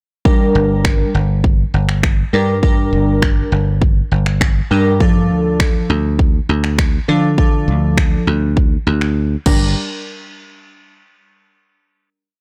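Glassy digital keys open this short, bittersweet and energetic dance-pop piece at 0.2 s, pushing decaying, fast-attack chords in G minor with a chorus shimmer, a filter sweep and a sidechain pump. The pop drum kit enters at 0.3 s with an electronic, layered four-on-the-floor beat at 101 BPM, built from a punchy kick, finger snaps and crash cymbal, with soft clipping on the snare. At 0.6 s a dry, foam-muted slap bass joins, its bright, direct off-beat line also pumping with sidechain compression. The harmony moves from G minor to D minor and back, and all three parts sit up front in a blown-out, overdriven digital ambience. A silent gap at 9.2 s gives way to a final hit that rings until 12.1 s.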